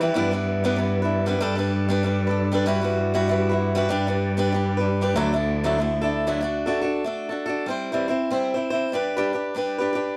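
Cheerful and bright, this short Celtic folk reel moves at 192 BPM in 4/4 with a light swing on the eighth notes. A picked acoustic guitar carries the accompaniment throughout, its bright, boxy tone sitting up front as it moves through open, colorful chords such as Gadd9, Emadd9/G and Dadd9. A single bowed cello supplies the bass line beneath it, smooth and even with a rich vibrato. The cello drops out at 6.4 s, where the second section begins, leaving the guitar alone on D, C/E and G until the cut at 10.2 s. The sound is dry and close, with a touch of light reverb and the intimate feel of a 1970s studio.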